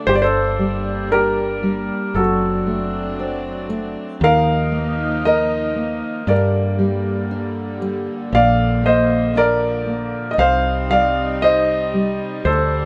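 In a straight, unhurried 4/4 at 58 BPM, this melancholic, intimate acoustic folk-pop ballad in G minor sets an up-front grand piano melody, its action noise audible, over dark, fingerpicked classical nylon-string guitar, a round, punchy fretless electric bass and a distant, floating sul tasto string section holding soft-attack chords, heard with the light reverb of a band playing together in one room as the harmony moves from Gm through D7/F# and Ebsus2 to Bb and Cm in this cut from a longer piece.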